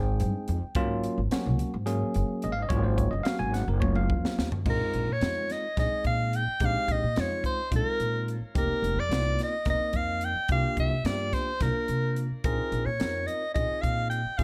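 A small room's light reverb frames this short, polished cut from a longer electric jazz fusion piece, funky and intense, moving at 216 BPM in an odd 7/8 metre with a straight feel. From the start, a bell-like tine electric piano comps suspended chords, opening on a rootless Bb9sus4 before shifting to Ab13sus4, while a woody, thumpy upright bass with gut strings is plucked down low. The acoustic drum kit, airy with a high-tuned snare and a punchy kick, enters at 0.2 seconds and works across hi-hat, snare, toms and crash, closing the opening passage with a fill that leads into the next section. At 4.7 seconds a clear soprano saxophone steps up front as the soloist, singing in a jazz style with vibrato and scooped notes. Beneath it the harmony cycles through Bb9sus4, F9sus4 and C9sus4 before returning to Bb9sus4.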